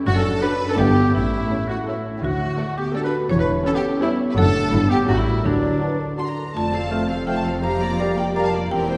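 A bright, woody marimba struck with hard mallets carries the melody in this playful, magical film cue in D major at 167 BPM in 3/4, joined by a lush, expressive violin section, a focused background violin melody, a clear oboe, an airy silver flute and a clarinet weaving second lines, while smooth violas, a ringing fingerpicked harp and tight, mellow French horn chords fill the middle, rich cellos and double basses anchor the bass, a vintage-toned bassoon slips in at 6.9 s as the harmony turns toward F, and a scoring-stage reverb sets the orchestra further back in the room.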